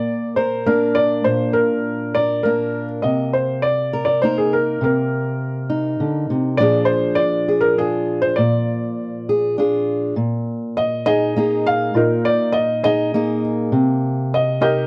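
Acoustic folk-pop ballad in 3/4 at 101 BPM, cut from a longer piece, with a melancholic, heartbroken mood. A felt-muted upright piano carries the melody, its soft, intimate tone thin-felted with short sustain, over a dark fingerpicked steel-string acoustic guitar accompaniment, both parts sitting up front and playing throughout. The dry, close 1970s-style studio sound carries light reverb, and the harmony moves from Bb through Cm7 and Bb7 before a new section begins at 10.2 seconds on Bb7sus4, returning to Cm7.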